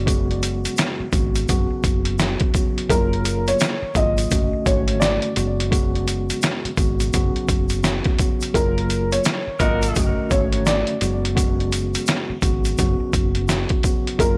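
Confident and warm, this boom-bap hip-hop excerpt swings over a gritty, overdriven sampler-style drum kit with a thumpy kick, sitting up front, while a round, hollow-body electric bass anchors the low end, a mellow tine electric piano with cassette-tape coloring carries the chords, and a grainy tube shaker stays in the background. From 2.9 seconds a dark, worn upright piano with audible action noise and analog delay plays the melody, and a tight horn section with octave doubling adds a brief stab at 9.6 seconds. The whole piece has the dry, gritty feel of a hardware recording in a small room.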